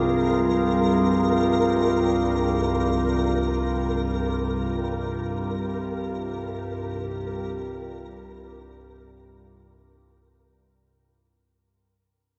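Ominous and cavernous, this dark ambient drone floats in free time, a brief passage cut from a longer piece that rests on a single F minor chord over C. A calm, organ-like drone sits low and up front, its sine-based unison tone softened by a slow attack and long release and colored with ensemble chorus, built-in reverb and phaser. Above it, a deep, moody analog pad holds sustained chords, its blend of square, sawtooth and triangle waves thickened by a sub octave and a moving notch, then treated with chorus and shimmer reverb. A flickering, grainy texture hovers on a single high note, its detuned granular triangle tone veiled in built-in and shimmer reverb. The whole sound is bathed in a cathedral-like reverb, and from 1.6 seconds a fade-out carries the music away until the pad ends at 11.4 seconds.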